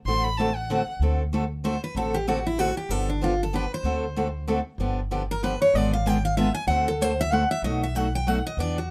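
Swinging and charming, this short cut from a longer acoustic string swing piece in D mixolydian moves at a brisk 190 BPM in 3/4, opening with a brief expressive violin phrase, close and warmly bowed with vibrato and portamento, before a bright, picked steel-string acoustic guitar takes the melody from 1.6 seconds over a full-bodied jumbo guitar accompaniment and a woody pizzicato upright bass, all up front in light reverb as the chords move from D7 through G7 and G#dim7 to B7.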